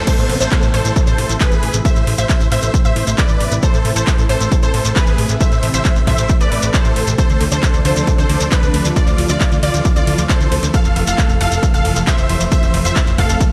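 Uplifting trance at 135 BPM in A minor, euphoric and bittersweet, catches a drop cut from a longer piece, where a huge, detuned supersaw melody with 12-bit grit, sidechain pumping and diffuse delay is joined by a bright unison pluck second line, a silky string pad with ensemble chorus and phaser, a punchy, funky filter-plucked analog bass, a very quiet riser, swell and downlifter ending by 3.6 seconds, a punchy tape-warm electronic kick up front, a big-room kit of handclaps, metallic hats, ride and crash, and a grainy, close shekere, all moving through Am, Dm7 and Fmaj7 under light reverb.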